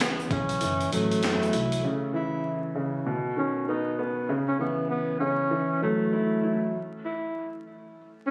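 A breathy, whispered tenor saxophone with tape echo carries the melody over a dark, mellow grand piano in this gritty, moody boom-bap hip-hop piece, where woody pizzicato upright bass, a compressed sampler-style drum kit with a thumpy kick, high-tuned snare, hi-hat and handclaps, and a grainy egg shaker drop out at 1.8 seconds, leaving saxophone and piano over vinyl crackle and a phone-in-the-room sound until the piano stops at 6.8 seconds.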